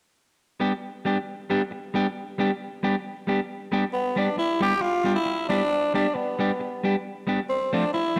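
A lightly swung 4/4 ska groove opens this cheerful, upbeat fragment as a clean, picked semi-hollow electric guitar plays from 0.6 seconds, before a raspy, growling tenor saxophone with light vibrato and tape echo takes the up-front solo melody from 3.9 seconds, the harmony moving from G to F at 7.5 seconds in a dark production bathed in a long, wet plate reverb.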